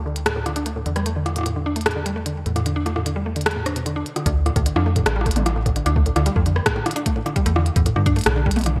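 IDM with an eerie, melancholic mood, this passage cut from a longer piece sets a metallic, decaying FM bass beneath woody, mallet-like synth pluck arpeggios coloured by chorus, phaser and digital delay, with a filter sweep on the arpeggios through the first 4.3 seconds. An up-front glitchy drum kit of clicky hi-hats, rim clicks and toms plays throughout, overdriven and treated with gated reverb, and at 4.3 seconds a soft, overdriven electronic kick drum enters as the harmony moves through Dm to Em7. The bright 1980s-style digital production carries a light reverb.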